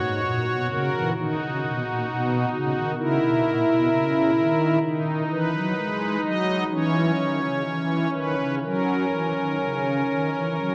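Rubato 4/4 motion around 61-66 BPM carries this serene, majestic chorale-style classical fragment in B major, cut from a longer piece, where a solo pipe organ on strings celeste stops sounds up front with a soft, shimmering tone and romantic voicing, moving from F# through B, A#dim, B/D# and C#m back to F# by 8.6 seconds, all bathed in a long cathedral reverb of 4.8 seconds within a dark production.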